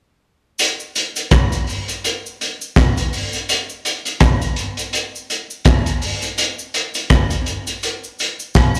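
Smooth and sweet, this reggae excerpt at 83 BPM in 4/4 with a 57% swing on the sixteenths centres on a crunchy breakbeat drum kit of hi-hat, rim click and punchy kick, dark, saturated and gritty with a rolled-off top and sitting up front, while a cabasa with egg-shaker and group-handclap colour stays in the background, both playing from 0.6 to 8.8 seconds in a small room heard through a live club PA with light reverb.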